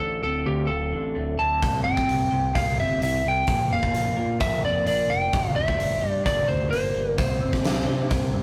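A straight 4/4 pulse at 129 BPM drives this angsty, cathartic quiet-loud alternative rock clip, cut from a longer piece, moving through Dm7, C, Bb and Gm before landing on a C5. A compressed, lightly driven lead guitar carries the melody up front, over twangy, lo-fi arpeggios from a guitar through a small old amp with a phaser, and a growling, overdriven fingered bass. The acoustic rock kit, with a punchy kick and a medium-tuned snare, enters at 1.6 seconds, and a stone room reverb and warm saturation give it all a rough rehearsal-room feel.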